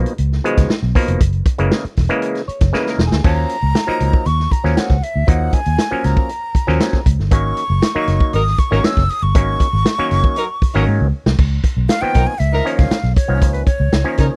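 A dry, close 1970s-style studio sound frames this playful funk excerpt, where an auto-wah clav's bright, twangy stabs and a round, foam-muted fingered bass ride over a vintage drum kit with a punchy kick and dark cymbals, a breathy jazz flute takes the melody from 3.2 seconds and a solo from 11.4 seconds, and a mellow, distant horn section adds a second line from 8.3 seconds.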